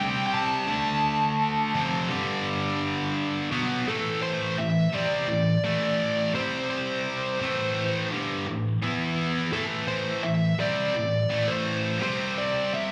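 Heard through a club PA with a lush hall reverb, this brooding, gritty rock excerpt in A minor moves at 85 BPM in a straight 4/4. A bright, overdriven, double-tracked electric guitar sits up front, picking a riff with slapback echo through power-chord shifts that reach A minor at 3.9 seconds and keep returning to it. Above it, a dark fuzz lead guitar, also picked and echoed, carries the melody across the full 12.9 seconds.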